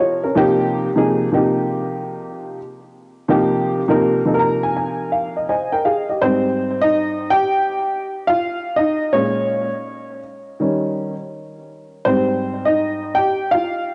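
Hip hop at 82 BPM in 4/4, with a lazy 16th-note swing and a relaxed, warm mood, this short excerpt cut from a longer piece centers on a single dark upright piano playing alone in Ab major, tuned slightly flat of standard pitch. The piano sits up front with a woody, mellow tone and short sustain, colored by an analog delay and set in a moderate, lush hall reverb. A fill arrives at 4.0 seconds, leading into a solo passage from 6.2 seconds to the close at 13.9 seconds. The harmony moves from Abmaj7 through Bbm7 and Eb7 before settling back on Abmaj7. The cassette home recording gives the sound a vintage, softened top end, fitting the smooth, unhurried feel.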